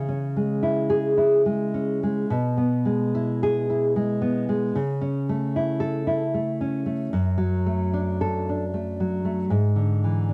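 A romantic piece for solo classical guitar, cut from a longer work, moving in a gently rubato 3/4 with uneven beats and a warm, sunny mood. The nylon-string guitar sits up front with fresh strings and a thumb-plucked touch, ranging from F#2 to A4 as the harmony passes from C#m through E/B, A/C# and D/F# to E7/G# by 9.5 seconds. It carries the character of a home cassette recording, with light reverb and the ambience of a small room.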